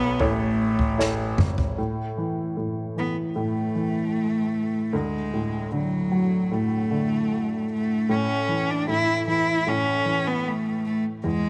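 Set in a light, small-room reverb, this tender, emotional pop ballad in A major moves at a slow 76 BPM, with a nasal, bowed cello singing the melody over a woody, slightly detuned upright piano that plays throughout. In the opening moments a concert grand piano with deep bass and audible action noise holds down the low end, while an acoustic drum kit played with bundle sticks on snare and toms adds a fill from 1.0 to 1.8 seconds before both drop away. From there the warm duo of vibrato-rich cello and vintage upright piano carries the passage through a gentle move from A to D and back.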